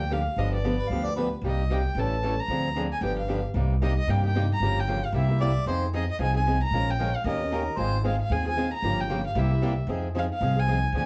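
Heard from further back in a club with a wet reverb and a softened top end, this short cut from a longer jazz manouche piece swings and sounds virtuosic, with a reedy, gut-string violin carrying the melody up front in a period style with light vibrato. Beneath it, a woody, thumpy upright bass plucks the low end while a bright, boxy swing-style guitar and a warm steel-string guitar set further back pick out the minor-key changes. A clear, close-miked harmonica adds a second line with scooped notes, first in a brief phrase at 0.8 seconds and then from 5.4 to 8.0 seconds.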